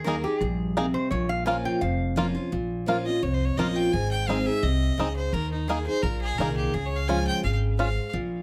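Over a swung 4/4 bluegrass groove, a thumpy pizzicato upright bass, a full-bodied picked steel-string acoustic guitar and twangy, percussive banjo arpeggios set a haunting, rustic tone, while a metallic lap resonator guitar played with a steel bar takes a short solo until 2.1 seconds, before a biting, earthy bowed fiddle carries the melody from 3.1 seconds with light vibrato and tape echo, all caught on close, detailed microphones with light reverb in this cut from a longer piece.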